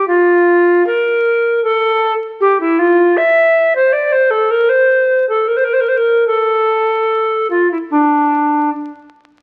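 Classical, baroque-style fantasia for unaccompanied tenor recorder, grave and solemn in mood, moving in a free, rubato 4/4 and cut from a longer piece. The recorder plays alone from 0.0 to 8.7 seconds, ranging from D4 to E5 with a pure, woody, straight tone, soft attacks and a touch of chiff, sitting up front yet touched with distance. A large, wet studio reverb surrounds the line, and the crackle of a very old 78 rpm record colours the sound.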